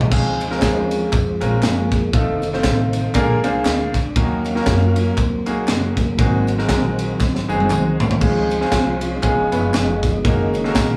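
A tonewheel organ takes the lead throughout this short slice of uptempo gospel, its clean, clear tone carrying key click, chorus vibrato and the churn of a fast rotary speaker. The mood is uplifting and reverent, set in a swung 4/4 over a progression that moves from Dbmaj7 through F7, Bb7, Ebm7 and Ab7 before returning home. A brilliant concert grand piano sits up front in accompaniment, reaching down into a deep bass register, while a woody, growly pizzicato upright bass with steel strings thumps beneath. The crisp, polished fusion kit is punchy and airy, with a high-tuned snare, ride, crash and toms, and it breaks into a fill from 7.2 to 8.2 seconds. Tambourine, tube shaker and group handclaps sit close but in the background, and the whole band sounds as if it is playing live in one small room, bathed in a wet studio reverb.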